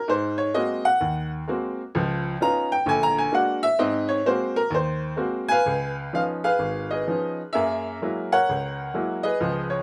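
Swinging eighths with a rubato give and take carry this short, sophisticated solo jazz excerpt, where a bright upright piano sits up front with a brilliant, woody, open tone in light reverb, ranging from Ab1 to Bb5 over rich ninth chords and an augmented seventh before a new section opens at 5.7 seconds.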